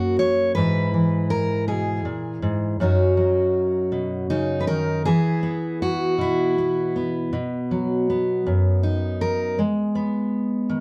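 A fingerpicked steel-string jumbo acoustic guitar, full-bodied and up front with audible finger squeak, carries this nostalgic solo folk excerpt in a slow 6/8 at 53 BPM, moving from F# through E/G#, Badd9/F#, Eadd9 and B to G#m across its 10.8 seconds, set in moderate studio reverb with a dark, warm production and a faint mains hum.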